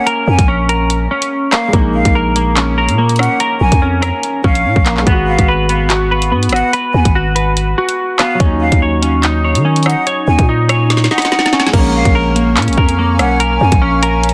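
A bright, clean semi-hollow electric guitar spins arpeggios with chorus and delay over a drill kit with a hard-clipped kick and growling 808-style bass in this menacing, tense half-time hip hop drill excerpt at 144 BPM in Bb phrygian, with an airy, vibrato-laden jazz flute line, a dark, mellow baby grand piano in the background, a drum fill at 10.9 seconds, and a glassy FM pad arriving at 12.5 seconds.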